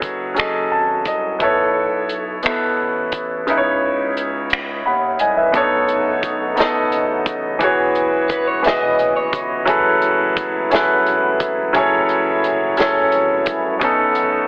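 Squeezed into a heavily compressed, telephone-like radio sound with moderate plate reverb, this yearning, sultry slow six-eight R&B fragment is carried by a clear, polished grand piano up front with an opening fill, a deep, saturated sub bass in the background and a distant, roomy soul drum kit with finger snaps, hi-hat, snare and a tight kick that briefly drops out, before a fat, lightly overdriven tonewheel organ with key click, chorus vibrato and slow rotary speaker enters at 5.6 seconds and a slightly broken-up, picked electric guitar adds a brief second line from 8.3 to 9.7 seconds.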